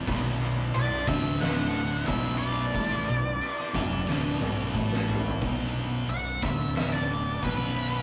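Two thick fuzz guitars, one up front and one in the background, grind out a riff in B minor over growly fuzz bass, a boomy, oversized drum kit with a fat snare, and a very quiet, silky string machine holding warbling chords in this brooding, heavy 90 BPM stoner-doom excerpt, as an octave-fuzz lead guitar with wah and analog delay enters at 0.7 s, a drum fill runs from 4.1 s, and the lead takes a solo from 5.4 s in a rough rehearsal-room sound.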